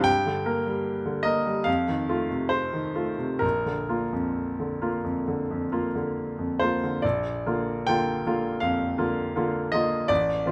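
A romantic classical character piece for solo piano, this short excerpt carries a stormy, brooding mood in Bb major. The tempo moves flexibly between 63 and 85 BPM in 4/4, with a rubato feel that lets the phrases breathe and press forward. A bright grand piano plays alone throughout, spanning A1 to G5 with a brilliant, open tone, short sustain and an up-front presence. The harmony passes from Gm to F7 before settling on Bb at 3.4 seconds, and a new section begins at 7.0 seconds, running until the cut at 10.5 seconds. Close, detailed microphones and light reverb give the sound a clear, intimate focus.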